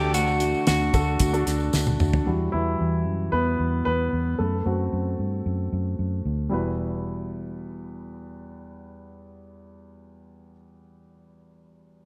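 In a straight 4/4 pulse, this bittersweet, earnest piano-driven pop excerpt opens with a brief clean, compressed electric guitar melody with slapback echo, a very quiet fingerpicked steel-string acoustic riff, a jingly tambourine in the background, and a dry 70s drum kit with a fat snare and tight kick that plays a fill before dropping out at 2.3 seconds. The polished, up-front grand piano then takes a solo until 6.5 seconds over a dark, round, foam-muted electric bass, which stops at 10.5 seconds. A light small-room reverb surrounds the parts, and the piano carries on alone as the cut from a longer piece closes.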